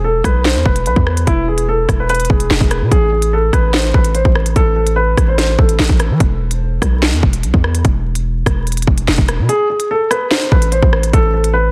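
A dark, mellow concert grand piano and a punchy, heavy 808-style bass open this menacing, tense drill cut at 146 BPM, with a half-time feel in A harmonic minor. The piano carries a melody between E4 and C5 through a tape echo, over chords moving from E to Am. The electronic drill kit enters at 0.2 seconds with a hard-clipped kick, sharp snare, crisp hi-hats, rim clicks and handclaps, re-recorded in a large room and set up front alongside the bass and piano. The sine-based 808 adds a noise layer, a fast attack and a decaying tail, and plays from start to finish while the piano drops out for a break between 6.2 and 9.5 seconds. When the piano returns on Am, the kick sits out briefly until 10.3 seconds. The mix has little reverb and a dense, heavily limited modern master dusted with vinyl crackle, in a passage cut from a longer piece.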